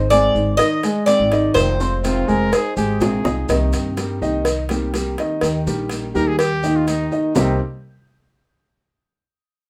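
A Cuban tres, picked and metallic on its doubled strings, sings the melody up front over a dark, mellow concert grand piano playing arpeggios, fingerpicked nylon-string guitar with audible finger squeak, and a woody pizzicato upright bass in this sultry, nostalgic son and guajira cut from a longer piece, moving at 124 BPM in C minor. Round, low-tuned cowbell and bongos played with soft hands sit close, while grainy maracas sound distant in a large room, and a drum fill arrives at 3.0 seconds. The tres drops out at 3.2 seconds, leaving a punchy, close-miked trumpet with light vibrato, which entered at 2.1 seconds, to carry a second line over the Cm7 and Eb chords under light reverb.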